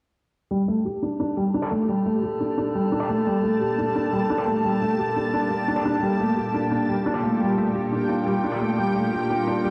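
A muted, felt-dampened upright piano opens at 0.5 s with intimate arpeggios over a Gmadd9 chord, its action noise audible under a filter sweep and digital delay, before an eerie, metallic FM drone, also swept by a filter, and a cloudy, evolving granular pad gather around it in this dark, aggressive drum and bass fragment in G minor at 174 BPM, while a very quiet, bright, double-tracked distorted guitar jabs in with tight stabs from 1.6 s to 8.6 s, all set in a lush hall reverb with the stony echo of a bare room.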